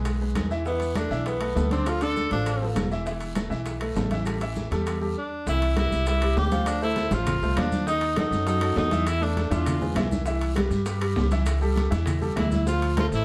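Heard from a little further back in a moderately reverberant studio, this passionate, danceable salsa excerpt sets an edgy tenor saxophone solo up front over a dark, thumpy pizzicato upright bass and a clear, polished grand piano with long sustain, while bright congas, ringing timbales, raspy guiro, grainy maracas, very quiet tight bongos and distant woody claves fill the background, with the band stopping at 5.2 s as the sax returns and a drum fill arriving at 9.7 s.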